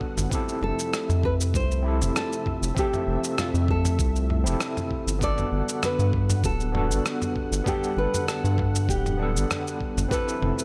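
Sunset chillout in G major at a relaxed 98 BPM with a light sixteenth-note swing, this blissful excerpt from a longer piece drifts from Fmaj7 to Gmaj7 over a barky, overdriven tine electric piano with fast tremolo and digital delay, and a lush, detuned unison pad with chorus. A round, deep analog bass sits up front from 0.2 s, alongside a thumpy electronic kick and a dusty, tape-warm soul sampler-style kit of rim click, shaker and toms. From 0.6 s a dark, fingerpicked nylon-string guitar carries the melody, finger squeaks and all, echoed by digital delay in a light reverb.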